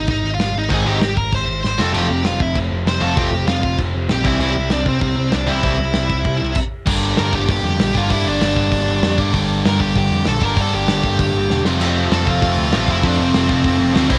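Straight 4/4 punk rock rhythm from a loose, small-room drum kit with dark cymbals, a punchy kick and a cassette-tape grit drives this energetic, rebellious excerpt, where a growly overdriven picked bass supports a high-gain lead guitar up front carrying the melody, a bright, crunchy rhythm guitar and a tight distorted guitar enter with riffs at 0.7 seconds, a double-tracked fuzz guitar adds a background riff from 1.9 seconds, and a brief stop at 6.6 seconds breaks up the lightly reverberant, home-recorded sound.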